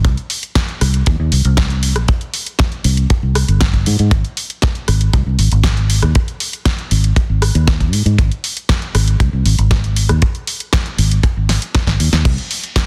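A dense, heavily limited modern master with a small room ambience gives this short nu-disco fragment, cut from a longer piece, a close and compact sound. At 118 BPM in a straight 4/4, the mood is sensual and cosmic, tuned slightly sharp of standard pitch. A fingered electric bass sits up front with a dark, round, foam-muted tone, direct and amped, moving between G1 and Ab2 until it stops at 12.4 seconds. Alongside it, an acoustic kick drum stays dry, tight and mid-forward, up front in the mix, while a layered electronic house kit adds a punchy snare, rim clicks, crash cymbal and bright hats, both dressed in studio reverb. A drum fill at 11.5 seconds marks the close of the passage.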